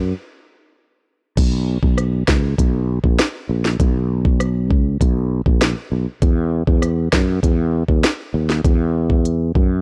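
Dancehall excerpt at 99 BPM in B major, bouncy and summery, where a growly, punchy fretless electric bass opens alone and the knocking kick, sharp snare, smooth hats, rim click and crash of an electronic afro-pop drum kit join at 1.4 seconds, both parts up front in a dry, gritty mix with cassette-tape and transformer saturation.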